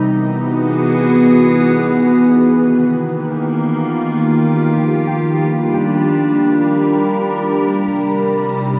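Ambient music in a weightless, luminous mood, cut from a longer piece, built on an evolving, detuned wavetable pad that holds sustained chords up front throughout, its morphing, bright tone treated with chorus and shimmer reverb and shaped by a filter sweep over the first 2.5 seconds. At 3.3 seconds a felt-muted upright piano enters with very quiet, intimate arpeggios, its thick felt lending a mellow, dark color and its action noise audible. The whole sits in a wet cathedral reverb with a long 7.7-second decay, moving from Eadd9 through Eb, Gm and Cm.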